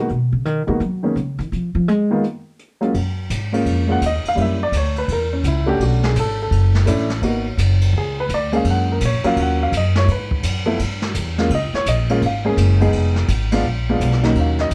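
Swinging in 4/4 at 168 BPM, this relaxed, sophisticated jazz piano trio excerpt in F# major opens with a woody, pizzicato upright bass solo before an intimate baby grand piano, up front with audible action noise and short sustain, takes its solo at 2.9 seconds, while a brushed drum kit with dark cymbals, a medium-tuned snare and a boomy kick sits mid-forward in a studio room with a rolled-off top, all within a dark, warm production and light reverb.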